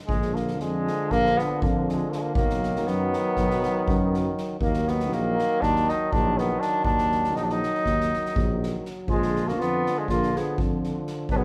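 A mellow flugelhorn carries the melody up front from the start, with light vibrato and a distant, roomy tone, over a euphonium in the background, a smooth-topped trombone, a dark tuba bass line and a soft-mallet drum kit with a fat snare and boomy kick. This restless, bittersweet Balkan brass band passage moves in a straight 9/8, played in a classical style by a band performing live in one large room with moderate reverb. At 9.1 seconds a close-miked clarinet adds a warm second line until the cut at 11.4 seconds, as this fragment of a longer piece ends.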